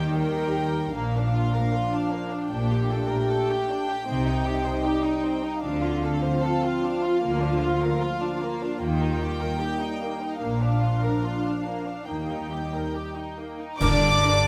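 In a rubato 4/4, this bittersweet, sorrowful cinematic cue, cut from a longer orchestral score, rests on sul tasto strings: a pure, floating violin section carries the high melody over a second violin line, a lush, woody viola section sits in the background, and an intimate cello section and dark double bass section supply the soft-attack low end. A French horn section holds warm sustained chords, and the whole ensemble is lightly touched by reverb. At 13.8 s an accent arrives on a G5 chord, bringing in an airy, distant flute ensemble, a mellow solo cor anglais, bright clash cymbals with concert bass drum, and very quiet hard-mallet timpani.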